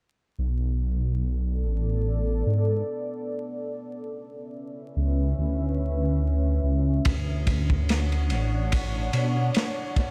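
Trip hop at 72 BPM with a melancholic, hypnotic mood, this short excerpt opens on a rumbling, detuned saw bass at 0.4 seconds, joined at 1.6 seconds by a moody ambient pad with chorus and built-in reverb holding sustained chords through Bm7, C#m7 and Dmaj7, before a crunchy, gritty breakbeat kit of kick, snare and dark ride cymbal arrives at 7.0 seconds with tape echo, all in a dry, echo-heavy mix dusted with vinyl crackle.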